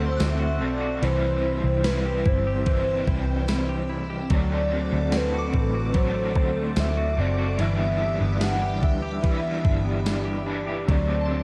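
A slow, straight 4/4 pulse at 73 BPM comes from a gated 80s digital drum machine, which enters at 0.2 seconds with a thumpy kick, ride cymbal, tambourine and a snare drenched in gated reverb, all sitting up front with a tape-warm edge. Beneath it, a vintage muted picked electric bass plays round and punchy, with a dark, amped tone. This dreamy, ethereal dream pop excerpt sits in D mixolydian and moves through D7, C and G6. A velvety synth lead carries the melody with vibrato, chorus and delay over a clean, fingered semi-hollow guitar playing arpeggios and a crunchy overdriven guitar picking out accompaniment through tremolo. A swirling, warbling string machine holds sustained chords under a phaser, while a soft, pure FM bell glimmers in the background. The production is dark and warm, set in light reverb.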